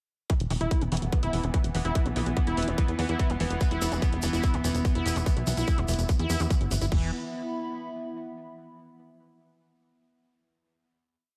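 A tight four-on-the-floor electronic kick drives this complete psychedelic trance piece at 145 BPM in straight 4/4, sitting up front while programmed closed and open hats, a backbeat and crash cymbal from a layered drum kit add small-room ambience behind it. A punchy, funky analog bass rolls in sixteenth notes with a filter pluck and fast decay, and above it a squelchy, aggressive acid line screams with distortion, chorus, tape grit and analog delay, its resonant filter sweeping as a six-step loop with slides drifts against the bar. A bright, detuned gated texture pulses in tempo-synced drones, and a very quiet, nasal vowel-sweep wobble bass slips in briefly around 0.9 seconds. From 1.8 seconds a nostalgic, lo-fi, warbling tape-like pad fades in with slowly shifting chords, while a grainy hand-played tube shaker, distant in a large room, adds sixteenths from 3.6 seconds. The groove gives way to a final chord at 6.9 seconds, leaving a hypnotic, psychedelic mood under light reverb.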